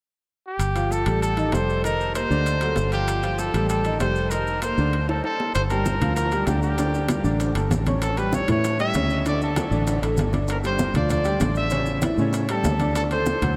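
Salsa at a fiery, danceable 194 BPM in G minor, where a bright, punchy trumpet with scooped notes and delay carries the melody up front over a round, foam-muted fingered electric bass, a clear concert grand piano with deep bass, ringing metal-shell timbales and grainy maracas, with congas and bongos entering at the close of a drum fill around 5.5 seconds as chords move from Gsus2 and Am7b5 to Gm7 and A7, all soaked in a huge, dreamy reverb in this cut from a longer piece.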